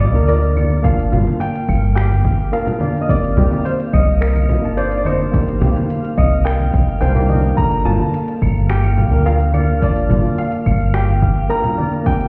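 Sunset chillout in G minor at 107 BPM, this smooth, warm excerpt drifts from Gm7 to Cm7 and back, with a bright, brilliant baby grand carrying the melody over a slightly out-of-tune tine electric piano through a combo amp, both touched with digital delay. A round, woody fretless bass sits up front with subtle chorus until 11.3 s, while a punchy overdriven electronic kick arrives at 0.8 s beneath a background deep house kit of cabasa, claves, finger snaps and metallic hats, plus ringing congas. Shimmering steel pan arpeggios and a twinkling granular texture glint in the background, and the whole mix sounds muffled through a wall, set in a stone room.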